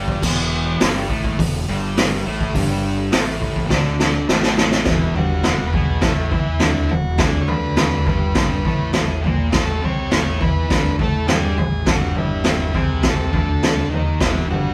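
A rowdy, raw garage rock cut opens at 0.0 s with a bright, double-tracked fuzz guitar riff over an Emadd11 chord, alongside a fingered electric bass whose overdriven, punchy tone sits in the background. The acoustic drum kit sits up front with a saturated, gritty sound and a rolled-off top, mixing a punchy kick, a medium-tuned snare, hi-hat, crash cymbal and toms at a straight 103 BPM in 4/4. A drum fill at 3.7 s leads into a new section at 4.9 s, where a vintage combo organ enters with a buzzy yet clean melody as the harmony settles on E5 before moving to A5 and back to E5. Tuned slightly flat to A4 = 435 Hz, the band sounds like it is playing live together in one small room with light reverb, and the piece is cut from a longer recording.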